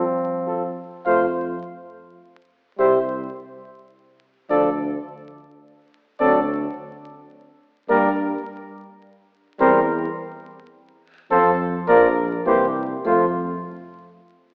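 A mellow cornet carries the melody in this stately classical brass quintet excerpt in three-time, with a close, up-front flugelhorn singing a warm second line and a dark French horn, set distant in the background, joining the roomy trombone in accompaniment. At 1.1 seconds a smooth-topped tuba enters on the bass, and the cornet, horn, trombone and tuba all play with light vibrato. The group sounds as if heard in a church or concert hall, under a long, wet reverb with vinyl crackle and an AM-radio tone, and the passage settles through F, Bb and C7 back to F.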